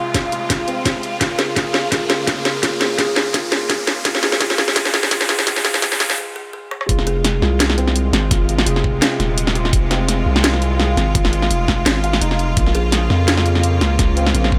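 This excerpt from a longer piece opens on a rich, bowed string section holding sustained chords with light vibrato and a biting edge, softened by a low-pass filter and pumping to the sidechain, while a felt-muted upright piano arpeggiates in the background with audible action noise, delay and a filter sweep. It is half-time drum and bass at 169 BPM in F minor with a slight swing, spacious and cinematic in mood, moving from Fm/C to Bbm. A background riser and a drum fill carry the build-up from the start to 6.2 seconds, as a knocking electronic kick and an up-front kit of cracking snare, rim click and bright hats drive beneath, and a woody, ringing kalimba with tape echo plays a thumbnail-plucked melody on Ab4 from 1.4 seconds. After a short break, the drop lands at 6.9 seconds with a deep, mellow sine 808 bass, fast in attack and decaying, sitting up front between Eb1 and F2. The drop returns to Fm and moves to Bbm, with the kalimba briefly reappearing, all under a light reverb.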